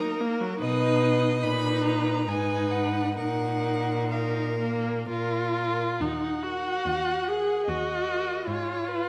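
A close, up-front viola carries the accompaniment in this solemn, melancholic fragment of a slow romantic string quartet movement in triple time, its warm tone shaped by vibrato, soft attacks and expressive portamento. Above it, one violin sings the melody with a smooth, even line and a smooth top, while a second violin sits farther back on a secondary line, gliding between notes with its own vibrato and portamento. A rich, close cello enters on the bass at 0.6 s, bowed smoothly and evenly beneath the other voices. The rubato pacing lets the harmony drift through minor and major chords and suspended colour before a new section begins at 6.0 s, returning to the home chord. A recital hall reverb gives the bowed strings a resonant, lingering bloom.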